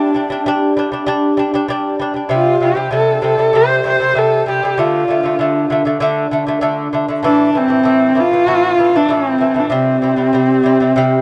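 Mongolian folk in a traditional vein, this short excerpt cut from a longer piece moves at 97 BPM in a straight 4/4, carrying a galloping, proud mood in the C zhi mode. A horsehead fiddle carries the melody throughout, a single bowed player on horsehair strings whose rich, husky, focused tone is shaped by vibrato and portamento, sitting up front yet with a distant quality. Beneath it, a fingerpicked lute plays delicate arpeggios on double nylon strings, some doubled at the octave, giving an acoustic, warm support that also stays up front. Both parts play together from the start to the end at 11.2 seconds, with the fiddle sounding slightly louder than the lute. The chords move from G5 through C5, D5 and A5 before returning to C5, all set in a huge ambient reverb with a long seven-second decay that lends the performance an open, spacious air.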